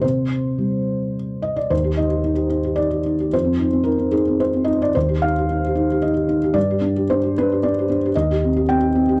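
A felt-muted upright piano plays alone in this reflective, wistful fragment of neoclassical minimalist music, moving in a rubato three-beat feel through chords such as Eb, Eb69 and Eb6. Its thick-felt tone is dark and mellow, with audible action noise, and the piano sits up front in a dry, close 1970s-style studio sound.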